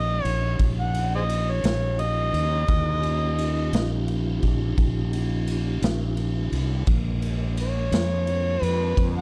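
An overdriven, gritty harmonica solos up front through plate reverb, with vibrato, tongue slaps and scooped notes in a jazz-inflected voice, in this rollicking slow blues in 12/8 at 57 BPM in Eb mixolydian, cut from a longer piece. Underneath, a piping tonewheel organ holds sustained chords through a slow rotary speaker with light overdrive, chorus vibrato, key click and plate reverb, while a round fretless electric bass with ensemble chorus sits up front. A raw garage drum kit enters at 0.3 s with a punchy kick, medium-tuned snare and ride in a bright, pumping stone room, its saturated sound rolled off at the top, as the harmony moves from Eb9 to Bb7 at 6.9 s within a dark production.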